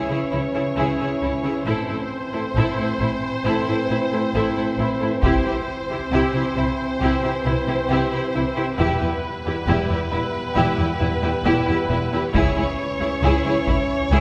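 Violins, violas and a French horn section open this epic orchestral film cue together, with cellos and double basses settling in beneath them a moment later. The lead violins carry the melody with a rich, expressive vibrato and portamento, while a second violin line moves beneath them with a smooth top, and the violas hold a clear, slightly distant accompaniment. The mellow, vintage-toned horns sustain chords in the middle register, and the woody double basses join the focused cellos to anchor the bass. A heavy, close and dry taiko ensemble strikes in at 5.2 seconds and again at 12.3 seconds, adding weight beneath the lush strings. The harmony moves from C# minor through A minor, C and E minor before returning to C# minor, building a relentless, dramatic tension throughout this cut from a longer piece. A long concert-hall reverb surrounds the orchestra in a spacious, resonant room.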